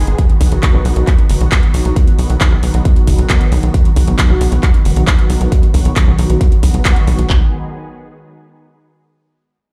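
A punchy, up-front kick leads this driving, bittersweet slice of uplifting trance at 135 BPM in a straight 4/4. The big-room electronic drum kit is layered and produced: one layer pairs the kick with handclaps, and a second adds handclaps and metallic hi-hats, both re-recorded in a small room. Also up front, a tight sequencer bass mixes sawtooth and square waves into a nasal, plucky tone with a fast attack and decaying notes, pumping against the sidechain. Behind them, an analog string pad holds silky, string-like chords from sawtooth and triangle waves with ring modulation, a slow attack and a long release, given ensemble chorus and its own sidechain pumping. A filter sweep runs across the pad from 0.0 to 7.3 seconds, and the harmony moves from B to G#m at 7.3 seconds as a new section begins. The sound suggests a big system playing in a bare room, framed by large studio reverb, in this passage cut from a longer piece.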